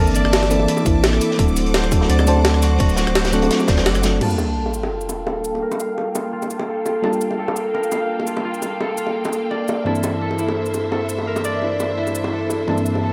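Dreamy and lush, this liquid drum and bass excerpt moves at 170 BPM in G dorian, with a light swing on the sixteenths. A mellow FM electric piano with a warbling, round tone, chorus and dub echo carries the accompaniment throughout, while a bright, bowed studio string section holds sustained chords under sidechain pumping and a low-pass filter, and a ringing concert harp plays arpeggios through its own filter and digital delay. In the opening 4.2 seconds a deep sine sub bass sits up front beside a tight, layered electronic kick, with a crunchy, saturated breakbeat kit tucked in the background, while a gritty, pitched-up jungle sampler-style kit and soft-handed, high-tuned bongos keep going nearly to the end. The kick drops out at 3.9 seconds, together with a band accent, and at 4.2 seconds a sub drop and riser lands as an impact while filter sweeps run on the strings and harp. The chords move from C13/G and D7 to a long Gm9 before returning to C13/G, all set in a moderate recital hall reverb.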